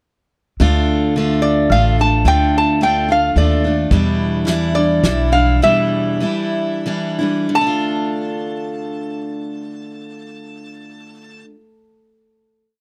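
Acoustic folk in 3/4 with an intimate, haunting mood: a bright, picked steel-string guitar strums open chords up front while a woody pizzicato upright bass plays a dotted figure until 5.6 seconds, a nasal, metallic lap resonator guitar with slide carries a motif-based melody from 1.4 seconds, and a soft brush drum kit with a fat snare adds a brief 3/4 groove from 3.9 seconds as the piece slows into a final Dm chord in a dry, close 1970s-style studio sound.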